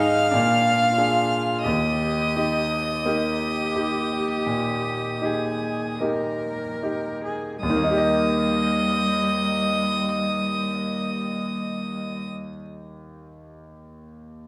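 A slow, serene romantic movement for piano quartet in Eb major opens at once with all four players. A high, pure violin melody floats up front over a woody second violin and an intimate, close cello line, each bowed sul tasto with soft attacks. A brilliant concert grand carries the accompaniment with deep bass, long sustain and audible action noise, moving from a Bb7 to an Eb chord in the first seconds while the rubato tempo slows through the opening 7.6 seconds. The strings stop around 12.3 seconds, leaving the polished piano to ring alone until 14.5 seconds in a dark, warm recital-hall sound, cut from a longer piece.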